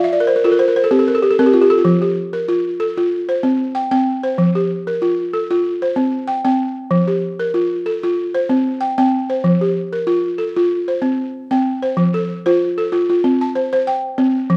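A solo balafon opens with a fill that runs to 1.9 seconds, then settles into a flowing West African traditional groove at 95 BPM in F major with a light 16th-note swing, its woody, buzzing tone struck with soft rubber mallets sounding full, dry and up front under light reverb as the harmony moves between F and C5 in this warm fragment of a longer piece.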